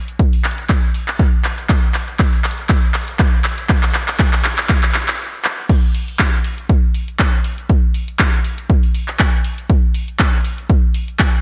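An overdriven analog drum machine with handclaps, hi-hat and crash cymbal, dry but touched with gated reverb, opens this sunny, funky house excerpt alongside a punchy, up-front electronic kick, building through a drum fill and filter sweep before a brief stop at 5.2 seconds and a drop at 5.7 seconds, all swung on the sixteenths in a bright 1980s-style digital production with light ambience.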